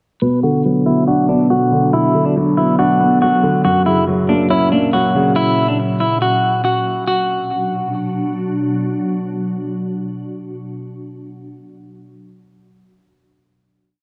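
A clean, hollow-bodied semi-hollow electric guitar loops a dark melody up front over a mellow baby grand piano's rising and falling eighth-note arpeggio with audible action noise, while a glassy, ethereal FM pad enters at 1.4 s with slow-attack chords that carry the piece after the guitar stops at 8.3 s, giving this menacing, half-time trap beat a drenched, echo-heavy spring-reverb sheen and a filter sweep through its breakdown until the final chord at 7.1 s.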